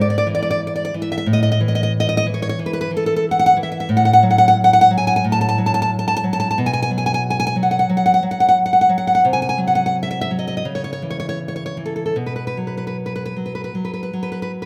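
Rubato phrasing pulls gently against a 4/4 metre in this romantic piece for solo classical guitar, which runs just under 15 seconds as a fragment of a longer work. The mood is sunny and nostalgic. The nylon-string guitar plays alone from 0.0 to 14.7 seconds, fingerpicked and sitting up front, with a warm, full-bodied tone and audible finger squeak. Its harmony moves from E/G# through A5 and F#m/A to B5, then passes through a Cdim and C#m before settling back on B5 near the end. A moderate recital hall reverb surrounds the playing, placing it in a concert room.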